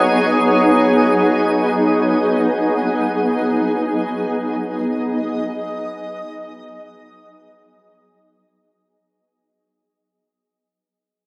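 A shimmering ambient pad sits up front, holding a single sustained C#9sus4 chord for the whole 9.1 seconds of this serene, weightless ambient fragment cut from a longer piece. Its ethereal tone blends triangle and sine waves with a wave-folded edge, a granular grain and an octave-up shimmer, and its slow attack and long release are softened further by chorus and its own reverb. Far behind it, a twinkling granular texture of FM tones glints high above, adding a sparkling, octave-up layer with its own reverb. That texture fades out across the full length of the passage, while the music floats in free time. A huge, wet reverb with a 7.3-second decay surrounds both parts, leaving the sound suspended and airy.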